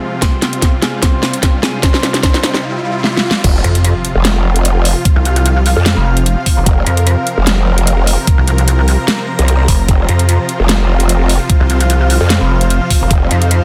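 A dense, heavily limited modern master with light digital ambience frames this heavy, aggressive wobble dubstep excerpt, which opens with a clean, fingered electric guitar melody trailed by dub echo over huge, detuned supersaw chords and a blurred, evolving granular cloud pad, both pumping to the sidechain, while riser, swell and impact effects sit in the background. A layered electronic drum kit with a massive snare and metallic hats, anchored by a knocking, up-front kick, drives the half-time, swung build-up with drum fills. At 3.4 s the drop lands with a growling, formant-filtered bass, joined at 3.6 s by a pulsing pluck wobble bass, both saturated and treated with chorus and overdrive.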